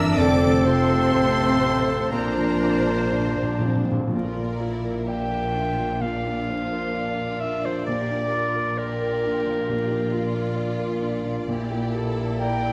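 A clear, up-front solo clarinet carries a second line beside a distant, vibrato-laden violin section melody in this hopeful, uplifting cinematic orchestral fragment in Bb lydian, unfolding in a rubato 4/4 around 58-68 BPM, while a dark, long-sustaining baby grand piano and background violas accompany and background second violins add another second line. A very quiet cello section and focused double basses hold the bass, and a roomy oboe, an airy, hollow flute and mellow horn chords all fall away by 4.1 s, just as soft-mallet timpani finish a fill begun at 2.1 s, with wet scoring-stage reverb and vinyl crackle framing harmony that moves from F to Bb and closes on Gm/Bb.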